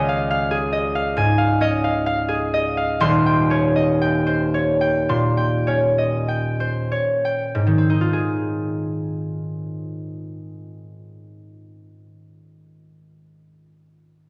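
Serene and graceful, this short excerpt from a longer classical piece features a solo concert harp in Ab major, ringing and up front as it moves with rubato feel at 45-72 BPM in 4/4, slowing down through the first 7.5 seconds over Dbadd9 and Eb13 harmonies before settling on Ab6, its fingerpicked tone spanning Eb1 to C6 within a wet recital hall reverb.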